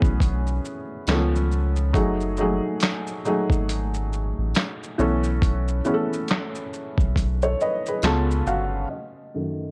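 This nostalgic, melancholic lo-fi hip hop excerpt at 69 BPM features a gritty, overdriven sampler-style drum kit, its thumpy kick and fat snare up front alongside hi-hat, shaker and handclaps, swung on the 16ths. A felt-muted upright piano with a mellow, intimate tone, softened by cassette tape and a low-pass filter, moves through F# dorian chords such as B9sus4 and C#7b13 over a deep, round dub sub bass, while a very quiet, jingly tambourine enters at 1.1 seconds. The recording carries light reverb and a dusty cassette-tape character.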